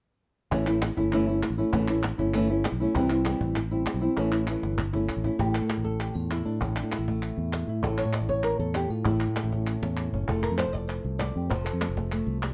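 A fingerpicked acoustic flamenco guitar carries the melody up front in this fiery, passionate flamenco excerpt, its tone warm over chords moving from A to C and back to A, later reaching F. A direct, amped fingered electric bass sits up front beneath it, while a snappy, dry cajon with snares and crisp, close palmas hand claps drive the straight 4/4 pulse. A drum fill from 4.2 s leads into a new section at 5.4 s, all within a dark production with a moderate studio reverb.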